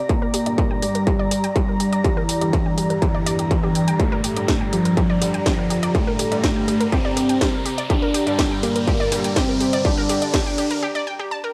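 A hazy, tape-worn home cassette recording in a moderate studio room carries this melancholic, dramatic melodic techno excerpt at 123 BPM in G dorian, resting on a single Gmadd9 chord throughout its 11.5 seconds. The whole stretch is a build-up: a filter sweep runs across the round, detuned analog pluck arpeggios, the fat analog lead and the sync-sweep polysynth, while an electronic riser climbs from 0.3 s to 10.8 s before a brief break to the end. Up front, a distorted, overdriven electronic kick drives a techno kit with a cracking snare and hi-hats pumped by sidechain. The mellow, sub-octave-weighted lead carries the melody between E3 and D4 with vibrato, phaser and analog delay. Around it, the bright pluck and the edgy, nasal polysynth stabs pump with sidechain and share chorus and delay, while a cloudy, blurred granular pad evolves in its own reverb.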